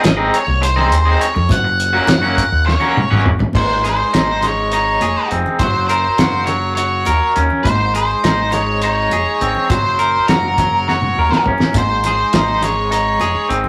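A fuzzed, octave-doubled lead guitar and a bright, twangy, slightly broken-up riff guitar with tremolo start together over a growling, overdriven fingered bass, cloth-damped thuddy drums with a fat snare and tight kick, and high-tuned, hard-handed congas sitting in the background. This hypnotic, kaleidoscopic psychedelic rock in 7/8 sways between Ab and Gb chords, with drum fills at 2.7 and 10.9 seconds and a new section arriving at 3.5 seconds. The rough rehearsal-room recording carries tube saturation and moderate studio reverb, with both guitars up front.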